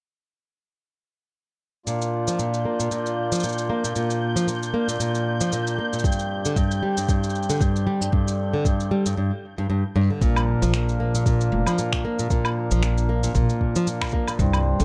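At 1.9 s, a mellow, reedy accordion holds sustained chords in plate reverb while a boxy, fingerpicked flamenco guitar plays arpeggios through a low-pass filter and tape echo, its finger squeak audible. Beneath them sit electronic shaker, woodblock and finger snaps, setting a playful, hopeful folktronica mood at 115 BPM in Bb major with a swung 16th feel. A grainy, flickering granular texture hovers high above with its own reverb, a soft electronic kick enters at 6.0 s as the harmony moves to Csus2, and a woody pizzicato upright bass sits up front from 10.2 s as the chords return to Bb.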